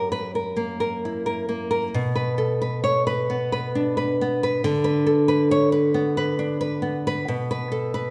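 A lush, reverberant recital-hall sound surrounds a single nylon-string guitar, heard warm and up front in this brief excerpt from a longer romantic piece for solo classical guitar. Fingerpicked with a rubato, three-beat feel, the guitar moves from a tense F#7b9 to Bm at 1.9 seconds, then through Bm/D to an open Asus2/B at 7.3 seconds, in a tender, nostalgic mood.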